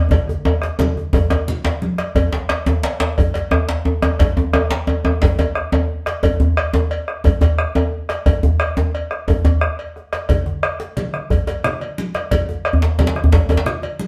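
A deep, up-front djembe played with soft hands leads this festive West African drum ensemble; its compressed, saturated sound sits at the heart of the mix until 9.6 seconds and returns at 12.7 seconds. The groove moves in a straight 12/8 at 118 BPM, counted in dotted quarters, and the mood is powerful and celebratory. A dark bombo sits up front with a small-room character. A second djembe, tight and cracking with metal rattles, is heard close throughout. A vintage, band-limited cowbell adds a metallic edge. Thick-skinned, damped congas, medium-tuned and warm, are heard at the start alongside an opening drum fill that lasts until 2.2 seconds, then drop out at 2.0 seconds and come back at 10.3 seconds near the close. The whole ensemble plays live together in one room with a wet studio reverb, in this short section taken from a longer piece.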